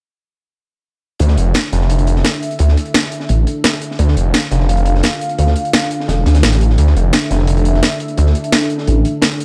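A straight 4/4 pulse at 172 BPM drives this mechanical, dark technical drum and bass cut in D minor, where a crunchy breakbeat kit with gritty, saturated hi-hats and a high-tuned snare enters at 1.2 seconds alongside a snarling, growling distorted saw bass sitting up front, a cracking, layered electronic snare joins at 1.5 seconds, and a deep, moody analog pad with chorus holds sustained chords from 1.6 seconds inside a small room ambience with dark, warm production.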